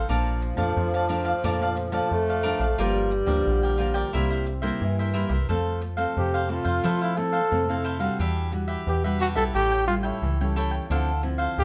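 A band playing live in one large studio room carries a moderate reverb over this sunny, joyful samba fragment in F major, moving at 89 BPM in a straight 4/4. Crisp, picked cavaquinho and warm, fingerpicked classical nylon-string guitar accompany throughout, under an up-front, metallic FM bass with a fast attack, decaying notes and a dark digital tone. A mellow, breathy tenor saxophone in subtone takes a jazz-style solo line with vibrato and scooped notes until 5.5 seconds, and from 6.2 seconds a dark, breathy trumpet steps forward with the melody, its smooth top and scooped, vibrato-laden notes riding chords that move from Bbmaj7 toward Fmaj7, Em9, A7 and Dm9.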